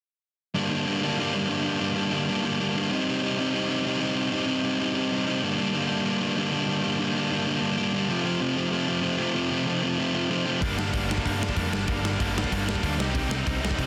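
Raw and aggressive, this punk rock excerpt in G minor charges along at 190 BPM in a straight 4/4. It opens with a crunchy, overdriven electric guitar playing a picked riff up front on its own, moving through Gm, Cm, Gm and F. At 10.6 seconds the full band crashes in: a bright, tight distorted second guitar adds a riff of its own, a growly, punchy overdriven bass digs in low, and a big acoustic rock kit of kick, snare and hi-hat lands with a punchy kick, a medium-tuned snare and a rolled-off top. The drums sit mid-forward and up front with a big-room character, while the overall sound stays dry with little reverb. The mix is dense and heavily limited in a modern style, and the piece cuts off at 13.9 seconds as the chords return to Gm and Cm.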